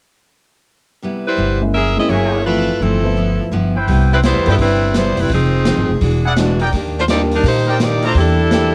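A clear, up-front saxophone section carries the melody with vibrato in this brassy, joyful big band swing excerpt at 168 BPM, entering at 1.3 seconds just after a full-bodied picked steel-string acoustic guitar, with a woody pizzicato upright bass and a warm concert grand piano sitting in the background following moments later. A distant, roomy trumpet section adds tight, soft-attacked stabs with light vibrato, and at 3.9 seconds a dark, smooth big-band drum kit with a punchy kick and rolled-off top joins as the harmony moves from Cmaj7 through Fm7 and Ebmaj7. Most parts carry the color of a home cassette recording, set in light reverb and small room ambience.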